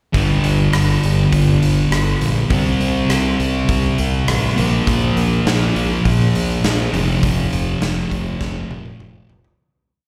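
Heard as a live gig through the venue's PA with moderate club reverb, this short, cathartic and angsty quiet-loud alternative rock verse pairs a dark, double-tracked fuzz guitar ringing out power chords up front with a growling, overdriven fingered bass driving eighth notes and a big, punchy acoustic rock kit, moving through G5, C5, Bb5 and F5 before a drum fill closes the fade-out at 9.6 seconds.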